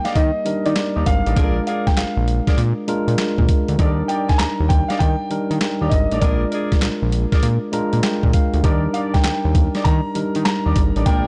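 A dark, warm digital ambience wraps this short, bouncy and flirty cut of new jack swing R&B, its top end rolled off above 10.9 kHz. Up front, a compressed, gritty sampler-style drum kit, pitched down with a thumpy kick and medium-tuned snare, drives the swung groove with handclaps and hi-hat. A fat, thick analog bass with a detuned sawtooth tone and a plucky filter holds the low end, while a clean, direct tine electric piano sits forward in the accompaniment and slips in a fill from 7.4 to 8.6 seconds. A grand piano carries the melody above, and a mellow jazz-style horn section adds smooth, vibrato-tinged stabs doubled at the octave. The harmony moves between Ebmaj7 and Bb7 across the roughly 11-second fragment, which is cut from a longer piece.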